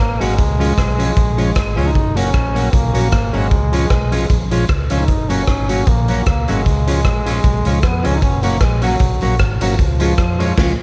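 Ska at 153 BPM in 4/4 with a light swing, this joyful, bouncy passage in F# major is cut from a longer piece and alternates between C# and F# chords throughout. A bright trombone with a light vibrato carries the melody with a present tone, its solo line set in tape echo and plate reverb. Underneath, a vintage muted fingered electric bass gives a dark, round, foam-muted bottom, while a clean, picked semi-hollow electric guitar supplies accompaniment with a hollow-body ring and plate reverb. A smooth tonewheel organ sits in the background with stabs, its key click and slow rotary speaker set in tape echo and plate reverb. The raw garage drum kit sits up front, gritty and saturated in a bright, pumping stone room, with a punchy kick, medium-tuned snare, rim clicks, hi-hat and crash, and the band lands a shared accent at 10.6 seconds over a bed of vinyl crackle.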